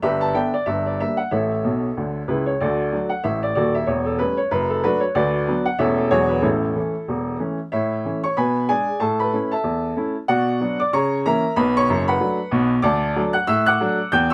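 A clear, woody upright piano sits up front in a dry, close room, playing solo stride jazz at a brisk 187 BPM with a playful, swinging lilt in D major that shifts to A major from 5.2 s, its open tone and long sustain spanning from Eb1 to G6 and adding a quick fill at 1.6 s in this short cut from a longer piece.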